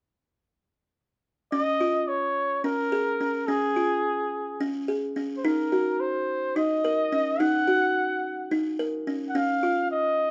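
In a straight 7/8 at 214 eighth-note beats per minute, this playful, shimmering contemporary chamber piece in D-flat major, cut from a longer work, opens at 1.5 seconds with a buzzing, woody kalimba plucked by thumbnail in short, vintage-toned arpeggios alongside a clear, punchy solo flugelhorn singing the melody with vibrato, the pair moving from D-flat to E-flat minor and back under light reverb.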